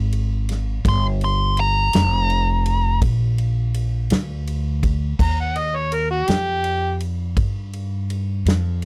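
A dry, close recording with a 1970s studio feel frames this short slice of gritty, rollicking slow blues in 12/8 at 55 BPM, in Eb major. Woody, growly pizzicato upright bass and a punchy acoustic kit with crash, ride, snare and kick carry the groove throughout, while a dark, smooth overdriven lead guitar takes a brief picked solo from 0.9 s to 3.0 s over Fsus24 and Bb. At 5.2 s an amplified, overdriven harmonica takes over on Ebadd9, its scooped notes, tongue slaps, light vibrato and soft attack giving the solo a jazzy edge.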